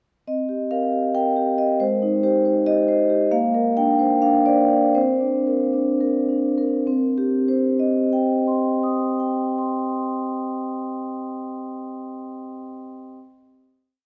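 Flowing and hypnotic, this short contemporary classical piece for solo vibraphone in C minor moves in a straight 7/8 at 202-278 BPM in eighths, its mellow, metallic, ringing tone struck with soft mallets with the motor off and heard close-miked and up front, tracing a single-line melody through broadly spread broken chords from Cm7 to Abmaj7, Bbadd9 and Csus2, slowing from 2.6 to 6.9 seconds before settling on a final C minor chord at 6.9 seconds that lingers in a wet cathedral reverb.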